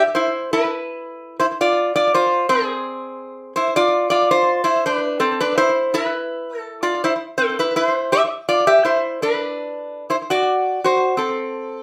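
A metal-body resonator slide guitar carries this dreamy, languid Hawaiian passage alone. It is played with fingerpicks and slide, sounding metallic and nasal, up front with a slapback echo and a moderate studio reverb. The music moves at 111 BPM with a swung 4/4 feel, passing through Fm, Dm7, a rootless G and D7 before the cut from the longer piece ends at 11.8 seconds.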